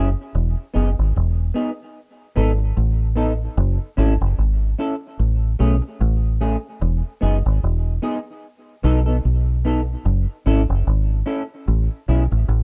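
A dry, rough home-demo sound frames this sunny, uplifting roots reggae excerpt at 74 BPM in E major with a swung sixteenth feel, where a round, foam-muted fingered bass sits dark and up front beneath a quieter, clean semi-hollow electric guitar bathed in lush chorus and dub echo, cycling through Emaj7, B7, F#m7 and Amaj7.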